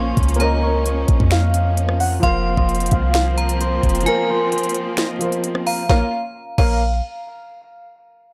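Hip hop in a trap vein, dark and eerie in Bb minor at 131 BPM with a half-time feel, cut from a longer piece and moving from Bbm to Fsus4. A thumb-plucked concert harp carries the ringing melody through analog delay, joined by a second line on a metallic, warbling FM bell with chorus, while a felt-muted upright piano adds soft, intimate accompaniment and a lush symphonic string section holds bowed chords with vibrato. Up front, a deep, boomy 808-style sine bass and an electronic trap kit of knocking kick, sharp snare, crisp hats, rim clicks, finger snaps and crash drive the dry, gritty mix, with the kick dropping out from 4.1 to 5.9 seconds.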